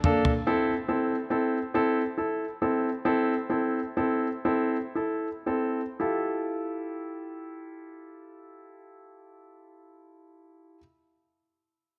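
A clear, polished baby grand piano sits up front with long sustain as the sole accompaniment in this heartfelt, swaying 6/8 pop excerpt, moving from a C6 chord that slows from 0.5 to 6.0 seconds into an Fmaj9 at 6.0 seconds, all set in a dark production with a moderate echo chamber reverb.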